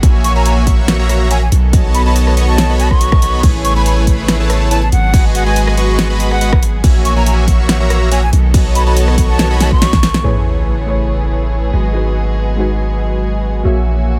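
A big, bright polysynth with a fat, detuned sawtooth tone carries the riff from the start of this euphoric, lush future bass excerpt, its chorus, cassette tape colour, dub echo and sidechain pumping giving it a bold, breathing presence. Set at 141 BPM in 4/4 with a half-time feel and a light swing on the sixteenths, the drop opens in A lydian over chords moving through F#7/A#, B7, Amaj9 and G#m7. Underneath, a long, deep 808-style sine bass sits up front and pumps with the sidechain, while a punchy electronic kick and a pop drum kit with fat snare, crash, rim click and warm hats drive the groove until a drum fill closes the section around 10.2 seconds. A breathy silver concert flute with expressive vibrato and a crisp attack sings the melody through delay, and a rich, earthy chamber string section holds sustained chords in the background. By 10.2 seconds the drums have dropped away, a very quiet sub drop marks the impact, and a soft, round pluck with a dark, filter-swept tone and gentle chorus takes up the accompaniment, all in a dry, close sound with little reverb.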